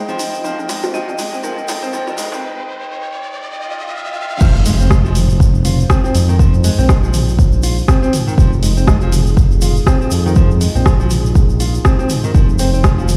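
Spiritual and warm, this afro house excerpt opens on a build-up where a woody marimba with tape echo and tight, cracking djembe sit in the background, dropping out at 2.4 seconds as an electronic riser and swell lead into a break. A deep, detuned analog pad with chorus and fingerpicked classical nylon-string guitar arpeggios with audible finger squeak both pump against the sidechain, over a grainy tube shaker and a layered deep house kit with dark hats, crash, rim clicks and toms. At the drop at 4.4 seconds, an impact hits and a tape-warm electronic kick enters up front beside the smooth, mellow sawtooth bass with vibrato that has been playing since 0.4 seconds, all set in a stone-room reverb heard on a big sound system.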